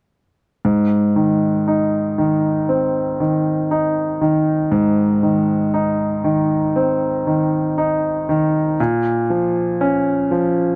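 Hopeful and heartfelt, this short pop passage cut from a longer piece sets a clear, up-front concert grand piano in the accompanying role from 0.6 seconds, its smooth, vintage tone and deep bass moving from an Ab chord to Bbm at 8.8 seconds under a moderate plate reverb in a dark production.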